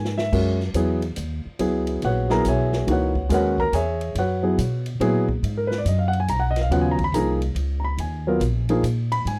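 Spiritual and searching in mood, this short cut from a longer modal jazz piece swings in a lilting 3/4. It opens with a brief drum fill before the trio settles onto a Gb9sus4 chord, then moves to G#m9 at 5.4 seconds as a second, matching section begins. A concert grand piano carries the accompaniment up front with a deep low end and short sustain, while a woody pizzicato upright bass with steel strings sits close beside it. Further back, a big-band drum kit keeps the swing going on ride, hi-hat and crash, with a medium-tuned snare and a punchy kick that sound natural in the studio room. The whole trio is dry and close in a 1970s studio style, with light reverb.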